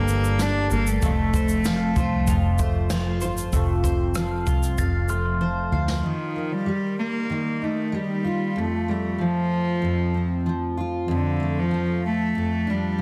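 A rich, floating bowed cello carries the melody with delay over a warm, up-front fingerpicked steel-string guitar in this carefree, heartfelt acoustic pop piece, joined by a woody mandolin playing arpeggios, a round, dark muted electric bass and a distant brushed drum kit, with a mellow bell-like glockenspiel adding a second line just before a drum fill at 5.4 seconds, after which the bass, drums and mandolin drop away to leave cello and guitar alone from about 6.6 seconds.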